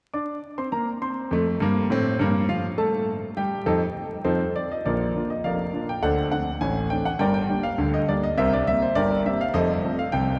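A grand piano opens the music alone at 0.1 s, playing playful, lively ragtime in Bb major at 102 BPM in a straight 2/4. Its tone is warm, smooth and vintage, with long sustain, and it sits up front, ranging from F1 in the bass to D6 in the treble. The harmony moves from Bb to F7, then a new section begins at 4.8 s, returning to Bb before stepping through D5, Gm and C5 and settling on F. The piano rings out in a wet, cathedral-like reverb with a 4.2-second decay, giving the sound the spacious air of a church or concert hall. A vinyl crackle runs across the recording, and the passage, cut from a longer piece, ends at 10.4 s.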